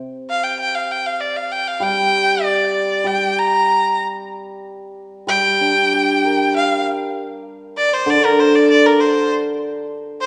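A single clear, earthy erhu carries the melody from 0.3 seconds, bowed up front with light vibrato and gliding portamento in this wistful, tender passage of Chinese traditional music. At 1.8 seconds a mellow hammered dulcimer joins as accompaniment, its shimmering, ringing notes sitting beneath the bowed line. The rubato feel drifts around 97 BPM in 4/4, and a moderate reverb gives the pair the airy depth of a church or concert hall.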